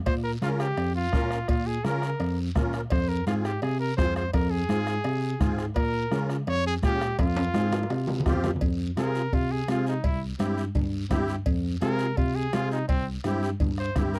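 A clear, punchy trumpet carries the melody from the start over a worn, slightly out-of-tune tine electric piano playing the bass line up front, with a soft-beatered bombo, ringing high-tuned congas, metal-shelled cowbell and timbales in the background, and a raspy guiro driving a danceable cumbia at 168 BPM in F minor. A reedy, shimmering musette accordion joins at 0.4 seconds as accompaniment, and after a drum fill the trumpet takes a vibrato-laden solo from 8.6 seconds as the harmony turns to F harmonic minor, moving between Fm and C. The dry, close 1970s-style studio sound gives this excerpt from a longer piece an intimate, vintage character.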